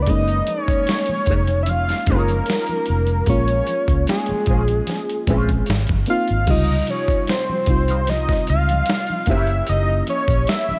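Relaxed and smooth, this short cut from a longer R&B and neo-soul piece sits at an easy 75 BPM in 4/4, with a gentle swing on the sixteenths. A fat analog lead carries the melody up front, its detuned sawtooth and square-wave tone thickened by a sub octave, chorus and vibrato. Beneath it, an FM electric piano with a fast, decaying attack and a faint noise layer plays the chords through a slapback echo. A dark, round, foam-muted fingered bass anchors the low end, while a dusty sampler-style drum kit sits up front, compressed and overdriven, with a thumpy kick, medium-tuned snare, hi-hat and crash. Very quiet, damped, low-tuned congas add a live-room texture, and a clean, mellow electric guitar with wah and slapback echo drifts in the background from 1.3 to 9.5 seconds. The harmony moves through lush extended chords such as Gb69, Bbm9 and Dbmaj9#11, with a new section arriving at 6.5 seconds, all bathed in light reverb.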